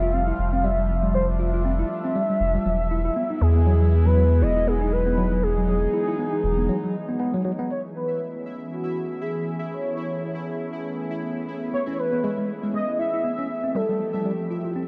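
IDM at 119 BPM in A lydian, playful and intricate, where a velvety detuned synth lead carries the melody over a warbling, nostalgic tape-like pad with chorus and phaser, worn tine electric piano arpeggios through a low-pass filter and digital delay, and a round, deep analog bass with tube saturation that stops at 6.7 s for a break before a faint pulsing gated texture enters at 8.1 s, all set in a huge ambient reverb with a dark production over chords moving from Fmaj9 through Emaj9 to Amaj9.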